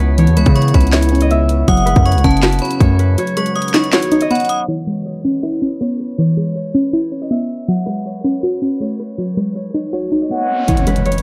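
A dark, low-pass-filtered digital ambience frames this menacing, brooding trap excerpt in C# minor at 160 BPM with a half-time feel, where a thumb-plucked Celtic harp rings out the melody over a warbling, lo-fi, detuned pluck with a filter sweep, while a deep, moody pad sits in the background. An up-front, saturated 808-style bass and an overdriven trap kit of hard-clipped kick, sharp snare, handclaps and bright hats drive the opening, joined by a metallic, inharmonic FM bell with tape echo, until the bass drops out at 3.2 seconds. A riser enters at 10.1 seconds and lands on an impact at 10.7 seconds as the pad and drums return with the kick muted, over chords cycling through C#m7, F#madd9 and G#m7.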